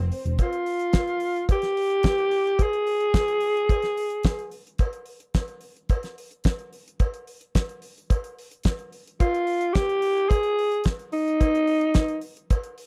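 A raspy, growling alto saxophone with vibrato leads this driving, glamorous disco fragment up front, playing from 0.4 to 4.5 seconds and returning at 9.2 seconds, over a damped 70s drum kit with a fat snare, tight kick and hi-hat and a rolled-off top, while a distant, metallic cowbell sits in the background of the dry, close 1970s-style studio sound.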